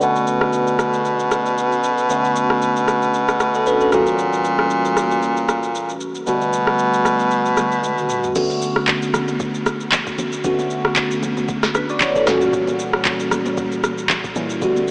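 A late-night, soulful amapiano groove with a gentle swing, cut from a longer piece and bathed in a huge, dreamy reverb that gives the mix a small-speaker haze. A bell-like tine electric piano carries the chords through phaser and a filter sweep over the opening 8.4 seconds, while a clear baritone saxophone with vibrato holds down the low end up front until 8.3 seconds. An electronic R&B kit with a soft kick, sharp overdriven snare, rim clicks, claps and shaker drives throughout, rolling into a drum fill before very quiet, damped, high-tuned congas join at 8.4 seconds.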